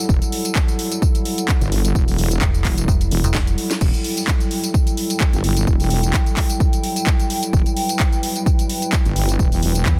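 A punchy, overdriven electronic kick drives this bouncy, gritty bass house cut at 129 BPM in 4/4, with a 55% swing on the sixteenths giving the groove its lilt. A house drum kit layers a cracking snare, bright hi-hats, handclaps, tambourine and crash cymbal over the kick, its overdriven edge adding grit, and a short drum fill arrives at 3.3 s. Up front, a heavy wobble bass holds the low end in E minor, its detuned sawtooth and sine tones thickened with chorus, tube saturation and sidechain pumping. A metallic FM bass with a fast attack and decaying tail cuts in briefly at 2.4 s, then reappears in the final moment. Beneath it all, a deep, moody analog pad sustains chords, opening on Emadd9, with a nasal, sub-octave body that pumps against the kick, while a warbling, nostalgic lo-fi pad sits far in the background with its own chorus and reverb. The mix is dry, dense and heavily limited, a gritty slice cut from a longer track.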